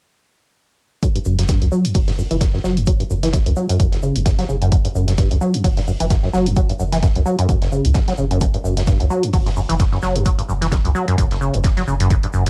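A swung sixteenth-note groove in 4/4 drives this trippy acid house fragment, built on a punchy, tape-soaked electronic kick up front, an analog electronic hi-hat and a dry acoustic reggae kit with a high-tuned snare, hi-hat and shaker, while a rubbery, resonant sawtooth acid riff carrying lush chorus, 12-bit sampler grit and analog delay is joined at 1.3 seconds by a round, dark, wave-folded synth bass with sidechain pumping, both basses sweeping their filters through a lightly reverberant cassette home-recording sound.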